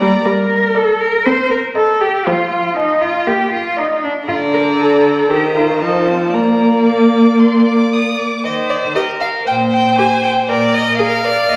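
Quick, spirited classical-period string quartet music at 118 BPM in Bb major, cut from a longer piece, in which a soft-attacked first violin sings the melody with vibrato and portamento over a rich, focused, distant second violin, while a dark, up-front viola with a smooth top and a warm, up-front cello carry the accompaniment and bass, the harmony moving to Eb major at 8.4 seconds, all within a wet scoring-stage reverb and a layer of vinyl crackle.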